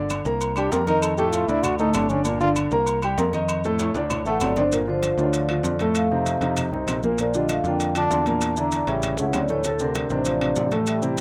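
A dark, intimate concert grand piano and a punchy, direct picked electric bass open this sultry, sophisticated Afro-Cuban jazz excerpt in G minor at a brisk 195 BPM in straight 4/4. Percussion fills in almost at once: woody claves set back in a small room, grainy, mellow maracas, very quiet, thin-skinned congas, and ringing, vintage-toned timbales and agogo bells. A clear trombone with light vibrato enters at 0.6 seconds and takes the opening solo as a present, jazz-style second line, while the piano, with its deep bass and audible action noise, moves through Cm7, F7 and Gm. A drum fill at 3.8 seconds leads into the second section, and a smooth, metallic vibraphone played with medium mallets and its motor off arrives at 4.3 seconds to carry the melody over Gm7, F7, Bbmaj7 and a closing turn through A to Dm7. Light reverb and a rough home-demo mix round out the sound.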